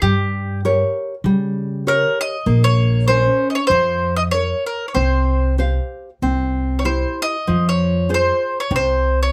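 A picked bowl-back mandolin carries the melody up front, its doubled strings ringing between G4 and Eb5 in this wistful, passionate Italian serenade. Beneath it, a classical nylon-string guitar is fingerpicked in a warm accompaniment that ranges from C3 to F5, with the occasional finger squeak audible. A pizzicato upright bass on steel strings adds a woody, growly low end from Bb1 to Db3. All three play together at 96 BPM in 4/4 with a gentle swing on the eighth notes, from 0.0 to 9.3 seconds. The harmony moves from Gdim through Bbmadd9 and Csus4 to C before settling on Fm, and a light reverb gives the trio a touch of space in this short cut from a longer piece.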